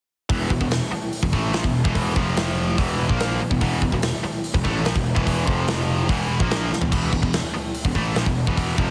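A tight, double-tracked distorted guitar riff, a growly fuzz-picked bass and a big, punchy rock drum kit kick in together at 0.3 seconds, driving a menacing hard rock excerpt at 145 BPM in straight 4/4 that shifts between E5 and F5 power chords. The guitar sits bright and up front, the overdriven bass adds a gritty low end, and the natural-sounding kit brings bright cymbals, a medium-tuned snare and a drum fill at 6.7 seconds. The whole mix has a heavily compressed, radio-style sound, and the cut stops at 8.9 seconds.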